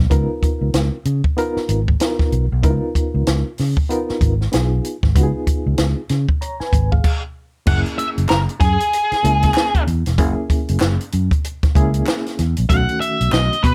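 Funky and playful, this dry 95 BPM funk cut, taken from a longer piece, swings its sixteenths over a punchy, amped fingered electric bass and an up-front compact cocktail drum kit with dark cymbals and a high-tuned snare, while a barky, reedy electric piano adds lightly overdriven stabs with fast tremolo through its built-in speakers. After a stop from 7.0 to 7.7 seconds, an up-front octave-fuzz lead guitar takes the melody with a dark, distorted tone. Crisp group handclaps join in the background at 8.3 seconds.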